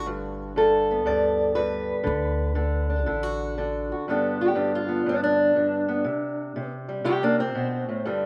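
A swung 4/4 feel at 120 BPM in G major carries this soulful, laid-back acoustic country blues excerpt, where an up-front, boxy parlour steel-string guitar fingerpicks the melody over G and D while a dark, woody pizzicato upright bass supports it until 3.9 s, after which the guitar plays alone from 4.1 s through G and C5, all bathed in a lush hall reverb within a rough home-demo mix.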